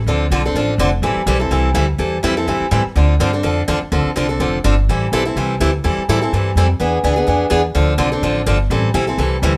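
Virtuosic and swinging, this short cut from a longer piece is acoustic string swing in the jazz manouche tradition, racing along at 250 BPM in 4/4 with a light swing on the eighth notes in A minor. An upright bass carries the low end, plucked on gut strings with a woody, thumpy, dark tone that runs from 0.0 to 9.6 seconds. Above it, a picked steel-string acoustic guitar plays the accompaniment, sounding bright and boxy with fresh strings, a parlour character and audible finger squeak, sitting up front in the mix. The harmony circles between Dm7 and Am7, with an E7b9 arriving at 6.8 seconds before returning to the minor chords. A moderate studio reverb gives the pair a natural sense of room.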